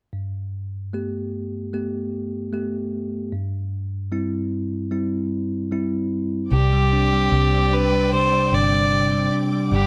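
Set in light reverb and studio ambience, this tender, emotional pop ballad fragment opens with a bright, bell-like tine electric piano playing up front over Gadd9 and C/G chords. At 6.5 seconds, a reedy, nasal bowed fiddle takes the melody with a gut-string tone, entering together with a lush studio string section holding sustained chords and a dark, foam-muted fingered electric bass with a round, punchy sound as the harmony moves to Csus2.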